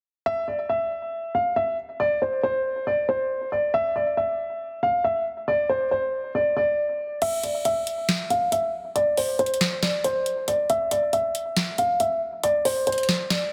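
The recording has a dense, heavily limited modern master with light reverb, and this cut from a longer piece sets a dark, hard-hitting trap mood at 138 BPM in 4/4 with a half-time feel, tuned to A4 = 442 Hz. A dark grand piano carries the melody from 0.3 seconds, sitting up front with a mellow, boxy tone and short sustain, moving between C5 and F5 through a low-pass filter and digital delay. For the first stretch the piano plays alone. At 7.2 seconds a booming analog drum machine enters, re-recorded in a small room and placed up front, bringing a crisp snare, metallic hi-hats and crash cymbal. The drums and piano carry on together until the drums drop out at 13.4 seconds, just before the piano closes at 13.5 seconds.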